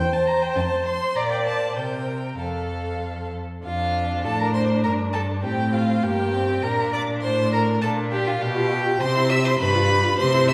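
A violin sings a high, vibrato-laden melody over a smooth viola accompaniment and a rich, up-front cello bass, with a second violin entering at 0.3 s on an even middle line, in this spirited, graceful excerpt from a quick classical-period string quartet movement in 2/4, heard from further back in a reverberant recital hall.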